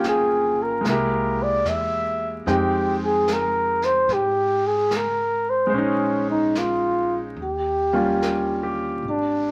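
Vinyl crackle and a moderate club reverb frame this wistful, melancholic swung jazz ballad excerpt, in which an up-front mellow flugelhorn carries the solo melody with soft attacks and scooped notes over bright, brilliant concert grand piano chords moving from Gm7b5 through Fm9 to Eb7, a woody pizzicato upright bass, and a low-level brushed drum kit on snare and hi-hat.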